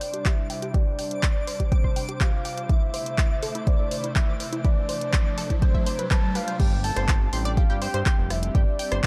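The deep, overdriven electronic kick drum stands out most, sitting up front in this uplifting, hopeful slice of progressive house at 123 BPM in a straight 4/4, cut from a longer piece. Over a Gsus4 to Am progression, a soft octave-layered synth lead carries the melody with a round, full tone, chorus, tremolo, vibrato and delay, while an airy, breathy pad holds sustained chords with a nasal edge and vintage 12-bit sampler grit. A lush unison pluck spins arpeggios through a filter sweep across the build-up, joined by a twinkling granular texture shimmering in the background and a riser from 2.9 s. The pop drum kit adds crash cymbal, handclaps, hi-hat and rim click, overdriven and re-recorded in a small room, with sidechain pumping breathing through the hats, cymbals, pad, lead and pluck. At the drop at 6.6 s the chords return to Gsus4 and a fat, detuned sawtooth analog bass arrives up front with its own filter sweep, all within a dark production with light reverb.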